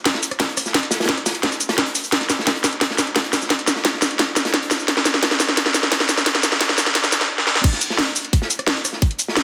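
A dark, futuristic drum and bass cut opens straight into a long drum fill through the build-up, led by an up-front layered electronic kit of cracking snare, metallic hi-hats, crash, rim click and shaker, with a gritty, saturated acoustic breakbeat kit with a rolled-off top sitting in the background and a tight electronic kick tucked beneath, in a wet digital room reverb and a dense, heavily limited modern master, until the drop lands at 7.6 seconds.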